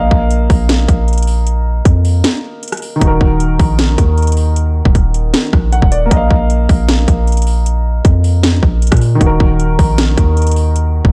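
A half-time trap groove at 155 BPM in 4/4 drives this menacing, eerie hip hop excerpt in Eb minor, with a brief break from 2.2 to 3.0 seconds. The trap drum kit enters at 0.1 seconds with a hard-clipped kick, a sharp snare, rim clicks and metallic hi-hats, all overdriven and roughened by vintage 12-bit sampler grit, sounding re-recorded in a small room and placed up front. Beneath it, a hard-hitting 808-style bass runs from Eb1 to Bb2, a punchy, heavy sine tone with a noise layer, fast attack and decaying tail that sits forward in the mix. A dark grand piano carries the accompaniment between Eb3 and Gb5, its mellow, worn, intimate tone revealing audible action noise and long sustain as the harmony alternates between Bbsus4 and Ebm. The production is dry, with little reverb, and the overall sound is shadowy and close.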